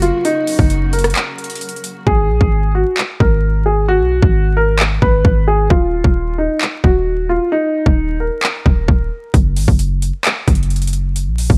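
Vinyl crackle and a small room ambience frame this eerie, hard-hitting cut from a longer trap piece in G# dorian, moving at 132 BPM with a half-time feel. A dark, mellow baby grand piano carries the melody up front until 9.3 seconds, while a lush, distant bowed string section holds smooth, vibrato-tinged chords only until 2.0 seconds. Underneath, a punchy sine 808 with a noise layer and fast attack pairs with an overdriven electronic kit of hard-clipped kick, claps, rim clicks and metallic hi-hats, the hats muted from 2.1 to 9.3 seconds.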